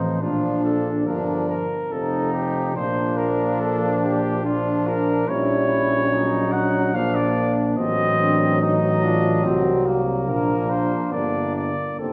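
A classical brass quintet piece in Bb major, this excerpt moves at 71 BPM in a flexible, rubato 3/4, with a triumphant yet warm mood. The mellow trumpet carries the melody up front, its tone punchy with a vintage character, while the flugelhorn sings a second line with vibrato and a distant, roomy quality. A clear French horn and a gentle-attacked euphonium, the latter set in the background, fill in the accompaniment with light vibrato, and a clear tuba anchors the bass from deep in its range. All five voices play throughout the full 12.1 seconds, moving through Bb, F7 and passing diminished chords before settling on Gm near the end. The ensemble is heard from further back in a recital hall, wrapped in a generous, wet reverb.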